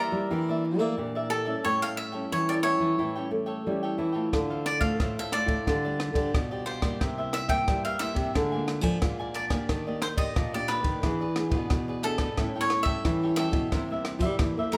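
Lively and joyful, this samba and choro excerpt moves at 90 BPM in a straight 4/4, cut from a longer piece. A bright, crisp picked cavaquinho carries the melody up front, while a second cavaquinho adds picked accompaniment with a softer, mellower tone. Nylon-string guitars fill out the harmony: one fingerpicked with a small, intimate sound, the other thumb-plucked on the bass line with fresh strings, audible finger squeak and a deep classical body. At 4.3 seconds a compact cocktail drum kit joins with a tight kick, ride cymbal and rim click, its dark, smooth small-room sound sitting close to the listener. The harmony winds through jazzy changes such as Em7b5, A7, Dm7 and Ebmaj7, all heard in the moderate reverb of a church or concert hall.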